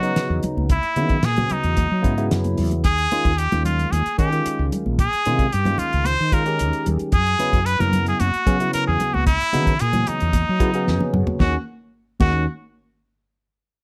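A straight 4/4 groove at 112 BPM drives this intense electric jazz fusion excerpt in Eb phrygian, with a damped 70s drum kit (fat snare, tight kick, rolled-off top) and high-tuned congas with soft hands sitting in the background from 0.4 seconds, all in a dry room. A round, dark fretless bass anchors the suspended Gb and Eb chords while a barky tine electric piano, clean through a combo amp and treated with phaser, fills out the harmony. Up front, a nasal trumpet with straight mute carries the melody with vibrato and slapback echo, and a drum fill at 10.9 seconds leads into a closing Eb minor chord at 11.4 seconds.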